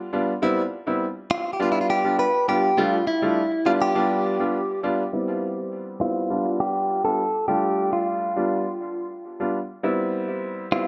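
This afrobeats excerpt in G mixolydian feels joyful and breezy, moving at 102 BPM in a straight 4/4, tuned slightly low to A4 = 436 Hz. A present grand piano opens the accompaniment at 0.1 s, sitting up front in its G3 to F4 register with a low-pass filter and analog delay. At 1.3 s a bright, cleanly picked electric guitar, recorded direct and compressed, takes the melody between E4 and B4, also up front and treated with its own low-pass filter and analog delay. The harmony cycles through Cmaj7, G7, F69 and G7 before landing on Cmaj7, and a filter sweep runs through the second section from 5.1 s to the cut. A moderate spring reverb and studio ambience surround the echo-heavy mix.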